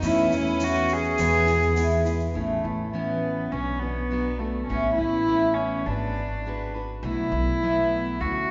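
This fragment of an acoustic folk piece in A major at 103 BPM opens with a bowed cello carrying the melody alongside a fiddle on a second line, a picked steel-string guitar, an upright bass and a tube shaker. The cello sits up front with a nasal, reedy, gut-string tone in a period style, while the fiddle adds a focused, rich voice with light vibrato before dropping out at 2.1 seconds. The shaker's grainy, bright texture, close and dry, drops out at 2.3 seconds. From there the full-bodied jumbo guitar and the woody, thumpy pizzicato bass on gut strings support the cello through a second section that moves from Aadd9 through Bm and G#m7b5 to an unresolved B7sus4. A lush concert-hall reverb with a 2.5-second tail and a soft, rolled-off top end wraps the ensemble in a nostalgic yet hopeful glow.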